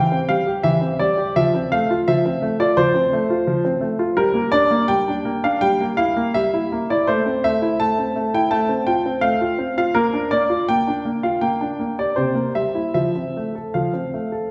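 In a rubato 4/4, a solo grand piano plays a playful, elegant classical-period sonatina passage, spanning C3 to A5 across the full 14.5 seconds. The piano's tone is clear and present, placed up front, while a wet recital hall reverb with a 1.6-second decay lends a sense of distance from further back in the room. The harmony moves through Gm, Edim/G and Am before settling on C7 at 12.2 seconds and resolving to F at 12.9 seconds, in a fragment cut from a longer piece.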